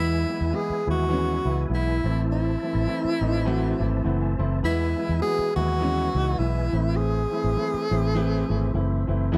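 This soul excerpt opens with all four parts together: a breathy tenor saxophone carrying the melody in a narrow range, an upright piano comping beneath it, a tonewheel organ holding sustained chords, and a muted fingered electric bass anchoring the low end. The tempo sits at 102 BPM in 4/4 with a swung eighth-note feel, and the harmony moves between E and Am, giving the short passage a warm, uplifting mood. Up front, the saxophone is close-miked and jazz-styled, its subtone and vibrato lending it an intimate, airy character, while the bass is dark, round and amped with a foam-muted thump. The piano sounds woody and polished with long sustain, and it steps forward with a fill from 3.5 to 4.6 seconds. Tucked in the background, the organ is mellow and clean, with key click, third-harmonic percussion, chorus vibrato and a fast rotary speaker, all set in light reverb with a small-room ambience.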